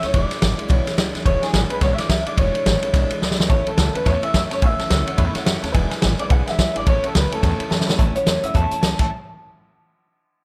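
Swung eighths at 214 BPM in 4/4 drive this rowdy, retro rockabilly cut in A major, where a vintage kit with a punchy kick and fat snare sits up front, an upright bass adds a woody, thumpy low end, a twangy, slightly broken-up electric guitar carries the melody through analog delay over a full-bodied picked steel-string acoustic with audible finger squeak, and a detuned, jangly honky-tonk upright piano enters in the background at 3.5 s, all wrapped in studio ambience.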